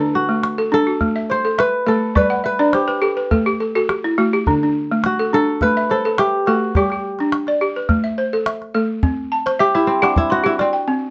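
A straight 4/4 pulse carries this flowing, warm cut from a longer piece of West African string and xylophone music, where a woody, buzzing balafon struck with hard rubber mallets spins up-front arpeggios with a fill from 2.2 to 4.5 seconds, a mellow, ringing fingerpicked kora sings the melody before taking a crisp solo from 9.0 seconds, and a small, close calabash adds dry percussion, heard in a moderate studio reverb.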